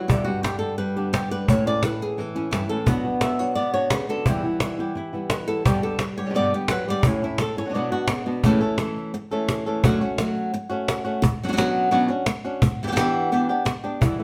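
Flamenco in a dramatic, fiery mood at 172 BPM, cut from a longer piece, with a fingerpicked lead guitar up front, soloing through the opening section, over a second fingerpicked guitar playing stabs, its finger squeaks audible, and a woody cajon played with soft hands and faint snares. The stab guitar drops out at 8.4 seconds as the chords move from a G, A, Bm and Em cycle to A, Dmaj7, Bmadd9 and Em7, then returns at 14.0 seconds. The players sound live together in a moderate stone room, which lends the ensemble a natural, ringing reverb.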